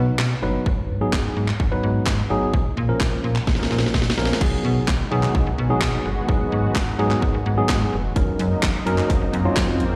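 Dance-pop in a driving, confident mood, cut from a longer piece and heard live through a venue's PA with recital hall reverb: a clean, bright tine electric piano with slapback echo and a snappy, metallic FM slap bass pump to the sidechain over an up-front house kit of punchy kick, cracking snare, hi-hat, handclaps and crash; a drum fill at 3.5 seconds ushers in a thick, warbling, detuned sawtooth pad with chorus sitting in the background from 4.4 seconds, and a very quiet electronic swell appears at 9.2 seconds.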